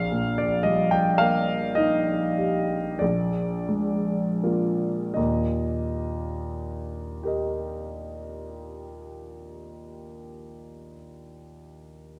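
Romantic classical nocturne for solo grand piano, tender and nostalgic, moving in a very slow, rubato 9/8 at 26-38 BPM in Eb major and easing to a slower pace over the first 5.2 seconds, with the present, up-front piano's long sustain ringing from Bb1 to G5 in a moderate recital hall reverb across this brief 12.2-second excerpt cut from a longer piece.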